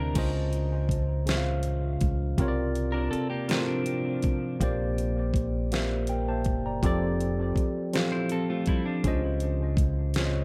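Slow R&B in 6/8 at 54 BPM, this sensual, intimate passage from a longer piece moves with a straight feel through an echo-heavy mix touched by light reverb. A worn, slightly out-of-tune tine electric piano sits up front, heard through its built-in speakers with analog delay, carrying the accompaniment over Dbmaj7, C9sus4, Bb6 and F69. Beneath it, a dub fingered electric bass lays down a round, punchy low end, direct and amped. An electronic, produced drum kit adds a knocking kick, a deep snare, metallic hats and crash cymbal, re-recorded in a large room. A dark, compressed, clean electric guitar plays a picked second line soaked in lush chorus and analog delay, heard for the first 4.6 seconds and returning briefly at 8.1 seconds.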